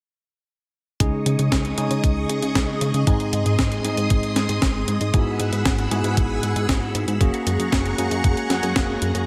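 A short cut from a longer, playful and danceable italo disco piece opens at 1.0 s with a thumpy sampler-style kick, an up-front 12-bit drum machine snare and hi-hat bathed in gated reverb, a glossy chorused synth bass with a mellow pulse-and-sawtooth pluck, bell-like tine electric piano stabs under a filter sweep and digital delay, and lush phased string-machine chords moving from Dbsus2 through Ab and Eadd9/G# to Gbadd9.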